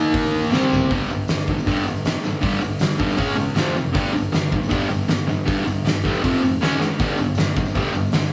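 Raw and swaggering, this short cut from a longer garage rock piece charges along at 157 BPM in a straight 4/4. A distorted fuzz guitar carries the riff up front from the first moment, its bright, picked, double-tracked tone compressed as it ranges from F2 to Eb4. Alongside it, an oversized low-tuned drum kit sits up front with a boomy kick, fat snare, hi-hat and toms, its gritty, saturated sound filling a big, pumping room. A drum fill at 0.5 seconds launches the main section at 0.9 seconds, and another fill lands at 6.8 seconds. A jingly tambourine sits close and dry in the background, while a moderate stone room reverb and small room ambience give the feel of a band playing live together in one space.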